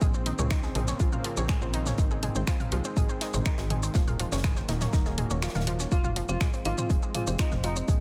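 Melodic techno at 122 BPM in 4/4 with a straight feel, this hypnotic, dark passage in F phrygian is cut from a longer piece and moves through Bbmadd9, Ab, Ebm and Fm. An up-front, layered electronic kick anchors the groove beside a punchy analog drum machine with tape-warm finger snaps, hi-hat, shaker and toms re-recorded in a large room, while a very quiet, polished acoustic studio kit adds airy hi-hat and a medium-tuned snare. A tight, driving sequencer bass of sawtooth and square waves with ring modulation and a fast filter pluck sits up front, sidechain pumping alongside a lush, thick unison pad of detuned sustained chords carrying chorus and vintage 12-bit sampler grit. Over this, a round, nasal analog pluck spins wave-folded arpeggios through chorus, cassette tape coloring and dub echo. The kick drops out from 5.4 to 5.9 s, and at 5.9 s a bold, fat analog synth brass melody with vibrato and digital delay enters, shadowed by an eerie, inharmonic FM bell line with tremolo in the background. 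Light reverb and digital ambience surround the mix.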